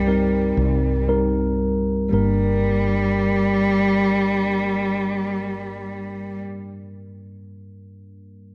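A rich, nasal bowed cello with vibrato carries the melody on G3, touched by slapback echo, in this melancholic, longing pop excerpt at 57 BPM in G minor, alongside a mellow tine electric piano through a phaser and a woody, round fretless electric bass inside a moderate echo chamber reverb, as the tempo slows over the first 2.1 seconds and the harmony moves from Cm7 to Gm, with the cello and bass stopping at 6.4 seconds while the piano carries on alone until 8.5 seconds.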